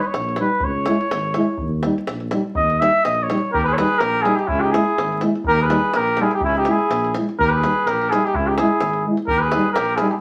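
Restless and fiery, this Balkan brass band piece, cut from a longer work, moves at 125 BPM in 2/4 with a light swing on the sixteenths, set in Eb phrygian dominant. A warm flugelhorn with light vibrato and a vintage tone opens the piece as the solo voice. A tight, close and dry davul and a dark tuba bass support it, while a pair of mellow euphoniums fill in the accompaniment, one with a soft attack. At 3.5 seconds a distant, roomy cornet takes over the melody from a position up front in the balance, while the flugelhorn continues as a second line. The harmony moves between Eb and Db minor throughout, and the whole is wrapped in a wet studio reverb with a layer of vinyl crackle.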